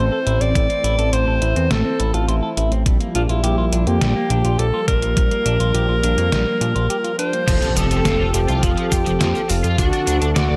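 Synthwave at 104 BPM, nostalgic and driving, with a clear, close-miked alto saxophone carrying a jazz-style melody with light vibrato over a fat, detuned sawtooth bass, a smooth chorused pad with sidechain pumping, and a clean picked electric guitar playing phaser-and-delay arpeggios until 7.4 seconds. Thumpy overdriven electronic kick and a detuned 8-bit drum machine with snare, hi-hat, cabasa and crash drive the groove. After a brief break, at 7.5 seconds a bright, double-tracked crunchy guitar riff enters alongside a very quiet impact, all set in a dark production with light digital ambience in this fragment of a longer piece.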